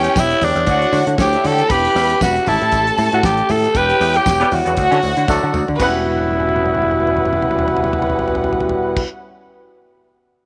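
Light studio reverb surrounds a bright, raspy tenor saxophone growling the melody up front. This sultry, danceable disco excerpt has a swung sixteenth-note feel. A bowed violin section with expressive vibrato and portamento carries a second line, while a soft-attack French horn section holds sustained chords in the background. A round, punchy picked electric bass and a dry 70s drum kit with a fat snare, tight kick and dark cymbals drive the groove, joined by jingly tambourine and very quiet high-tuned congas. A mellow, distant horn section doubled in octaves adds stabs from 4.4 seconds, during a band accent, and the drums play fills leading into and through the second section, which begins at 5.8 seconds on a minor six-nine chord.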